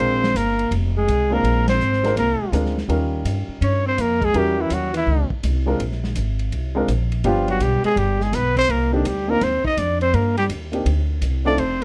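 Swung eighths drive this short, swinging fragment of small-group bop, where a warm, up-front trumpet with light vibrato carries the melody over a raspy, growling alto saxophone second line, an intimate baby grand piano with audible action noise accompanies, a woody, thumpy pizzicato upright bass sits up front, and a muffled, lo-fi vintage drum kit with dark cymbals sits low in the mix, the band hitting an accent together at 1.6 seconds in a close, detailed sound with light reverb.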